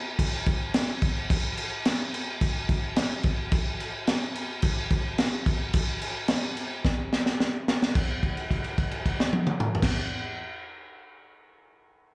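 Rock drums, rowdy and swaggering, roll along at 108 BPM in a straight 4/4 in this short cut from a longer piece, heard live at a gig through the venue's PA with light club reverb. The only part is a crunchy breakbeat drum kit, playing from 0.2 to 10.0 seconds, built from kick, snare, toms and crash cymbal. Its sound is gritty and saturated, with a punchy kick, a high-tuned snare, dark cymbals and a rolled-off top that keeps it smooth even as it sits up front. A drum fill arrives at 6.8 seconds and leads into a new passage at 7.9 seconds, where a held note rings out to 9.8 seconds. The whole thing carries the rowdy energy of a club set caught mid-song.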